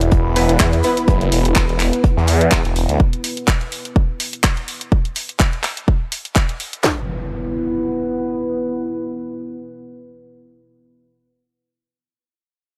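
Swaggering and bouncy, this bass house cut from a longer piece rides a swung sixteenth-note groove. Up front, a thick, swirling detuned saw bass with phaser, tube saturation and sidechain pumping drives the opening until it drops out at 3.0 seconds. Two layered electronic house kits, re-recorded in a small room, supply punchy kick, cracking snare, handclaps and hi-hat, joined at the start by a very quiet, smooth acoustic soul kit with a medium-tuned snare. A brief, bold orchestra-hit-like synth stab, bright with phaser, dub echo and reverb, flashes in the background near the beginning, alongside a cloudy, blurred granular pad and an electronic sub drop and impact. Beneath it all, a deep, moody analog pad holds sustained chords with subtle chorus and pumping, carrying on with the impact effects that return at 6.8 seconds as the drums stop around 7.0 seconds, all set in light reverb.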